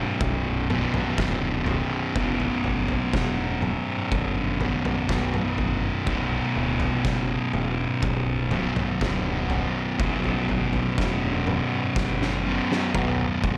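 This stoner and doom metal excerpt is hypnotic and sludgy, built around a slow, straight riff in 4/4 that grinds on from the first moment. Two fuzz guitars carry the riff together, both electric, picked, distorted and up front: one has a warm tone, while the thicker one leans dark. Beneath them, a growling picked electric bass runs through overdrive and tube saturation, its direct-and-amped sound giving the low end a warm heft. An oversized, low-tuned acoustic drum kit joins at 0.2 seconds with a punchy kick, a fat snare and toms, its gritty, saturated sound set in a bright stone room. The drums play a fill from 12.0 seconds until the cut at 13.6 seconds, and light reverb gives the whole mix a little air.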